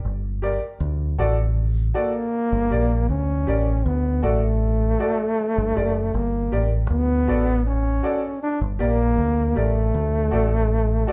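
A punchy, up-front trombone with vibrato and a smooth top carries the solo melody from 2.0 s in this laid-back, sunny reggae cut at 79 BPM in D major, riding a dark, round dub bass and the woody, slightly detuned stabs of an intimate upright piano with audible action noise over alternating Gm and D chords, the band heard playing live in one room with light reverb and some lossy compression artefacts.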